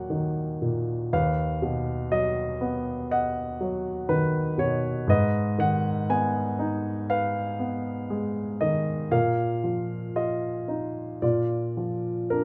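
A grand piano opens alone at 0.0 s with a warm, polished tone, placed up front and present in a close, detailed recording touched by light reverb. This is lyrical solo classical piano in a dark, reflective mood, moving slowly in 4/4 at roughly 54-62 BPM with a freely breathing rubato feel. The instrument spans from Eb2 in the bass to Ab5 in the treble, tuned to A4 = 441 Hz. The harmony settles on E-flat minor, passes through B/D# and A-flat minor, then rests on a Bbsus4 that turns to B-flat major at 11.2 s. The fragment, lifted from a longer piece, ends at 12.4 s on that unresolved dominant.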